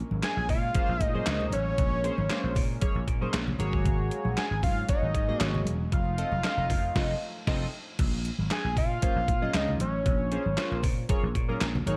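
The fat analog lead stands up front with a nasal, detuned sawtooth-and-square tone and vibrato, singing its melody high between Db5 and Ab5 over a danceable early-eighties boogie funk groove at 116 BPM in Bb minor. Beneath it, a detuned 8-bit digital drum machine hits with a thumpy kick, medium-tuned snare, hi-hat, handclaps and crash, its sampler-style sound tape-warm and re-recorded in a small room, while a bright, growly, punchy slap bass drives the low end down to E1. A glossy chorused polysynth with a phaser and filter sweep plays accompaniment from 0.7 seconds, and a shimmering, very quiet pulse-width pad holds sustained chords until 8.0 seconds. Very quiet congas with soft hands and a thick skin add an acoustic touch. The chords move from Bbm9 through Ab9sus4 to F7, the band hits an accent from 7.0 to 8.0 seconds, and the progression returns to Bbm9 in a dark, gently reverberant mix cut from a longer piece.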